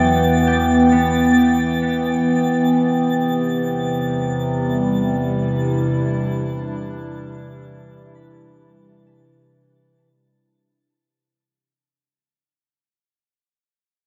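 Ambient and reflective, this spacious excerpt centres on a warbling, nostalgic tape-like pad that sits up front with chorus, phaser and built-in reverb, holding chords that move from Em to C/E. Beneath it, a deep, ominous rumbling drone and a reedy, close-miked pedal harmonium sustain low tones, while a twinkling granular texture sparkles high above and a very quiet concert harp plays ringing arpeggios. The dreamy mix is soaked in plate reverb and fades from 0.3 seconds, with the harp, drone and texture each fading out and the harp sounding alone until 12.3 seconds.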